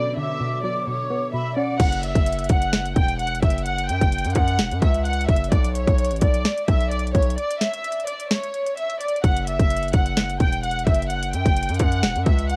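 A home cassette recording with small room ambience frames this dark, menacing half-time trap excerpt at 129 BPM, where a floating, soft-attack violin section carries the melody through tape echo over a round, phased pluck, lush background strings and a breathy silver flute, before a distorted, saturated 808 bass and an up-front trap kit with hard-clipped kick, sharp snare and crisp hats enter beneath the violins at 1.8 s, with a break from 7.4 to 9.2 s.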